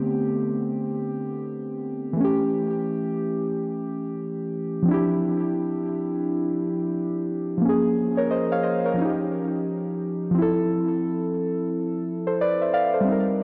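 Muted, felt-like synth keys play alone and up front for the full 13.4 seconds, their soft, mellow tone touched by chorus, cassette-tape color, a low-pass filter and delay, and they move through chords from Am11 to Fmaj7 in A minor. This is a nostalgic, melancholic hip hop fragment at 88 BPM in 4/4, with a swung sixteenth-note feel. A lush hall reverb drenches the intimate sound, giving the whole mix a dreamy haze.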